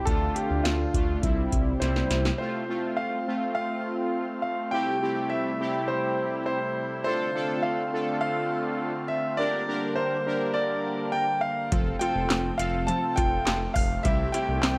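A wistful, nostalgic synth-pop passage in F major at 103 BPM opens with an intimate concert grand piano carrying the melody up front, its action noise audible and its long sustain trailing into slapback echo and shimmer reverb. Beneath it a vintage, warbling pad holds sustained chords with a slow attack, chorus and shimmer, while a fat, nasal analog synth brass fills in the accompaniment with detuned sawtooth tone and vibrato. A smooth, gliding synth bass with portamento and an electro analog drum machine, with deep kick, punchy snare, handclaps and metallic hi-hats, drive the opening, which ends in a drum fill, before dropping out by 2.4 seconds. They return at 11.7 seconds alongside a round, bright analog pluck playing arpeggios in the background. Chords move from Dm and C through F, C6, Dm7 and Gm, all set in a moderate plate reverb in this short cut from a longer piece.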